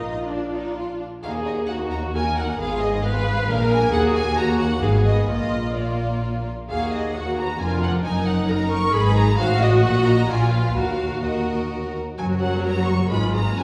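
Heard from further back in a recital hall, the wet reverb with a 1.7-second decay wraps this bowed string orchestra in a resonant glow. It is a quick, restless and dramatic classical-period movement in Eb minor and 3/4 at 132 BPM, tuned to A4 = 439 Hz, played with rubato and cut from a longer piece. The first violins carry the melody with a rich, distant tone, while the second violins trace a clear, lush second line beneath them. The violas sit up front in the accompaniment, and the close, warm cellos join the double basses on the bass. Each section plays with smooth, even vibrato, and the harmony circles through Eb minor, Ab minor and Bb7 before turning to F# at 12.2 seconds.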